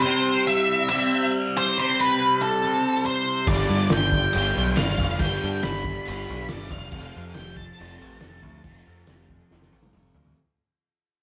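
A straight 4/4 pulse at 140 BPM drives this swaggering, sunny classic rock excerpt, which fades out across its whole length: a bright, overdriven semi-hollow guitar with phaser plays a riff while a dark octave-fuzz lead guitar carries the melody through distortion and slapback echo. Then at 3.5 s a second overdriven semi-hollow guitar riff sits in the background, a growling, overdriven picked electric bass pushes up front, a muffled, cloth-damped, thuddy drum kit with a fat snare and dark cymbals arrives, and a grainy egg shaker joins. The whole piece moves through a C, G and F progression in a moderate stone room, with the drums closing on a fill at 9.5 s.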